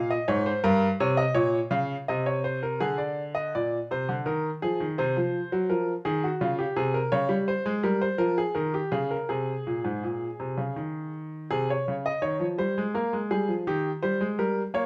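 A bright baby grand piano, sitting up front with long sustain, plays a serious, driving baroque-style two-part invention in Ab major, moving at 83 BPM in a straight 3/4 and spanning G2 to F5. Cut from a longer piece, the passage opens with a brief statement, wanders through a central stretch of chords such as Ab7/C, Db and Bbm/Db from 2.8 seconds, and returns to its opening material at 11.5 seconds before settling on Eb. A moderate stone room reverb gives the solo instrument a natural sense of space.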